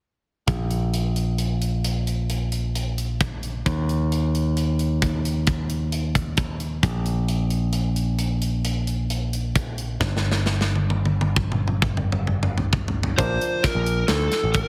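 Heavily compressed and radio-like with a light reverb, this driving, intricate cut from a progressive instrumental piece rides an uneven 7/4 metre. A bright, picked electric bass and a tight metal drum kit, big-room and mid-forward with a medium-tuned snare, carry the opening unaccompanied, and the drums play a fill from 10.0 seconds. At 13.2 seconds an overdriven lead guitar from a small cranked amp enters up front with the melody, while a dark, clean hollow-body jazz guitar sits low in the mix with the accompaniment.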